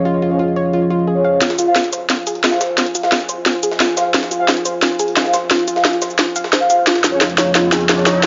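Dark technical drum and bass at 176 BPM in F minor, this mechanical, futuristic excerpt opens with a deep, detuned analog pad, a soft round pluck arpeggiating under tape echo and mellow, low-passed brass stabs over a filter sweep, before layered electronic drums with a cracking snare arrive up front at 1.4 seconds alongside a very quiet, gritty, pitched-up jungle sampler kit, building as the pad's filter sweeps and a background riser enters at 7.3 seconds, all bathed in lush hall reverb.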